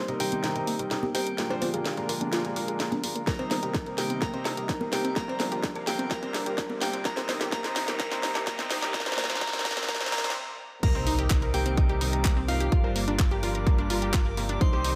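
A glassy, crystalline FM synth bell carries the melody in this dreamy, expansive progressive house excerpt, floating over a lush detuned unison pad, a punchy pluck arpeggio in the background, a round, dark analog bass, intimate concert grand piano stabs and a house kit with a cracking snare, while soft-handed congas, cowbell and woodblock sit behind. An up-front electronic kick joins at 3.3 s, filter sweeps and a very quiet riser build to the drop at 10.8 s, and a calm drifting glass-harmonics texture arrives at 11.5 s, with every other part pumping against the kick in a lush hall reverb.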